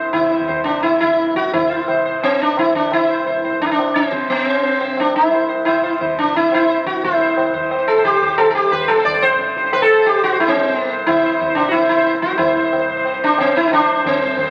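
Crackling like a very old 78 rpm record and set in a large studio's moderate reverb, this short devotional, serene Hindustani classical passage in raga yaman features a bright, buzzing, plectrum-plucked sitar up front with shimmering sympathetic strings, a warm, softly plucked tanpura drone in the background, and low-tuned tabla with a short ring entering at 0.1 seconds, all gradually speeding up as the music moves into a new section at 7.0 seconds.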